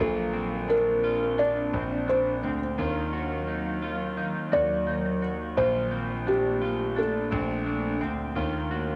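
This excerpt has the sound of a home cassette recording made in a small room with a moderate, short reverb. It is a dream pop piece in Bb major at 86 BPM in a straight 4/4, tuned slightly low to A4 = 438 Hz, and its mood is ethereal and blissful. A felt-muted upright piano carries the melody between G4 and D5, its dark, thick-felt tone showing audible action noise and set in plate reverb and tape echo; it stops at 8.0 s. Beneath it, an airy, detuned pad holds sustained chords with a slow attack and long release, thickened by ensemble chorus and cassette tape. A clean, bright electric guitar picks arpeggios through analog chorus, tape echo and cassette tape. A clear concert grand piano supplies an open, deep bass from Bb1 to Eb2 as the harmony alternates between Bbmaj9 and Ebmadd9.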